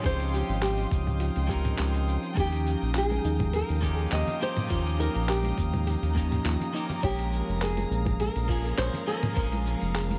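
Sunset chillout at 103 BPM with a light swing, wistful and smooth, in a cut from a longer piece where a bright fingerpicked flamenco guitar carries the melody through tape echo over a slightly broken-up electric guitar, sul tasto chamber strings holding sustained chords, a soft background pluck with chorus tracing arpeggios, a deep, up-front analog bass, a gritty overdriven sampler-style kit of cabasa, handclaps, hi-hat and toms with a thumpy kick that drops out at 9.5 seconds, a glassy drifting harmonics texture, and congas entering at 3.1 seconds, all moving through Dbmaj9#11, Eb9 and Bbm7.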